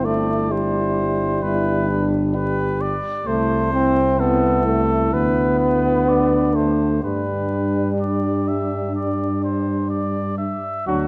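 The mellow tuba stands up front throughout this short, warm and triumphant excerpt from a classical brass quintet, anchoring the bass with a light vibrato from the lowest register. Above it, a clear trumpet carries the melody, while a trombone with gentle vibrato and a French horn with a smooth top, set further back, fill in the accompaniment. The harmony moves at a stately pace through G major colours, settling back on G near 7.0 seconds. A clear, vintage-toned flugelhorn with light vibrato enters up front only at 10.9 seconds, sounding a single brief note as the passage breaks off at 11.1 seconds. The ensemble sits in a moderate concert hall reverb, and the dark, warm production carries vinyl crackle.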